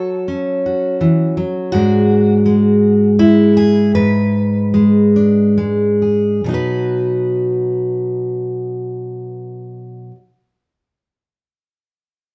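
In an unhurried 3/4 lilt of about 67 to 83 BPM that slows between 1.7 and 6.5 seconds, this gentle, warm folk excerpt in B mixolydian features a solo fingerpicked steel-string acoustic guitar, jumbo-bodied and full, sitting up front with audible finger squeak, moving from F#m through E7/G# to a B chord at 6.5 seconds before falling silent at 10.2 seconds, all within a live studio room bathed in wet reverb.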